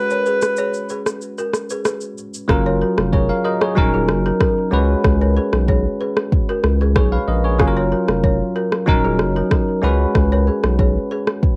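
Afrobeats excerpt at 94 BPM in Db mixolydian, joyful and breezy, where a breathy, whispered alto saxophone with plate reverb sounds for only the first second over a bell-like, chorused tine electric piano, a woody, round balafon riff with tape echo and an electronic afro-pop kit of deep kick, rim click and shaker, before a thick, saturated sub bass enters at 2.5 seconds beneath chords moving from Db7sus4 through Gbmaj7 and Ebm7, all carrying the soft haze of a cassette home recording.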